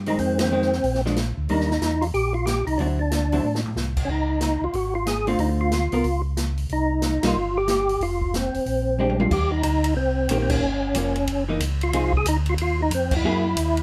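Soul jazz organ trio with a smoky, bluesy swing, heard as a short cut from a longer piece, where a round, dark tonewheel organ carries the bass line through slow rotary speaker and chorus vibrato. Up front, a second tonewheel organ takes the melody with a fat, lightly overdriven tone, percussive third-harmonic bite and audible key click, while a clean, compressed hollow-body electric guitar fills in the chords. An acoustic drum kit with dark cymbals and a boomy kick adds fills around 3.4 and 9.0 seconds amid band accents, and a light reverb gives the group a natural studio-room feel.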